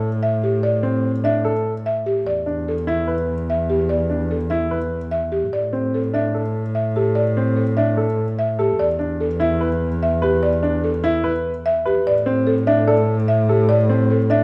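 Urgent and hypnotic, this short cut from a longer minimalist classical pattern piece moves at 147 BPM in A minor, with an intimate grand piano spinning arpeggios full of audible action noise and long sustain, a bowed double bass adding expressive vibrato and portamento underneath, and a woody, buzzing marimba carrying the melody from 0.2 seconds on, all caught by close, detailed microphones with light reverb.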